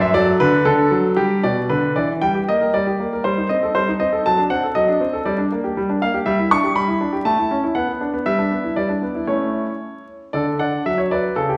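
Playful and elegant, this short passage cut from a longer classical-period piano sonatina moves in a straight two-beat metre. A solo grand piano carries the whole piece from start to finish, its tone clear, natural and up front, ranging from F#2 up to C#6. The harmony opens in a minor mood with chords such as Gm, Am7b5/G and D7/F#, then shifts brighter at 6.3 s, passing through Em7/G, A and Bm before settling on D at 10.3 s. The piano sits in a resonant recital-hall reverb that lends the notes a lingering, spacious glow, while a faint vinyl crackle adds an aged, intimate texture. The result feels graceful and lightly spirited, like a fleeting glimpse of a longer movement.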